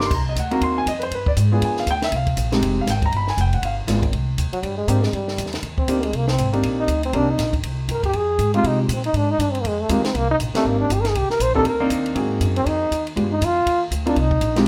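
Moody and smoky, this excerpt from a longer piece is small-group swing and bop in C minor, taken at a brisk 239 BPM in 4/4 with a light swing on the eighths. A concert grand piano sits up front in accompaniment, its intimate tone carrying audible action noise and deep bass, while a pizzicato upright bass with a woody sound on steel strings anchors the harmony throughout. A compact cocktail drum kit, dry and natural with dark cymbals, a high-tuned snare and a punchy kick, sits further back, using crash, hi-hat, ride, kick and snare. After an opening pass through the changes, the trombone enters at 4.5 seconds for a solo that runs to the end, clear, forceful and up front with vibrato in a jazz style. The harmony moves through minor chords such as Cm7 and Fm7 with G7b9 and Ab7 pulling back home, all set in a moderate club reverb.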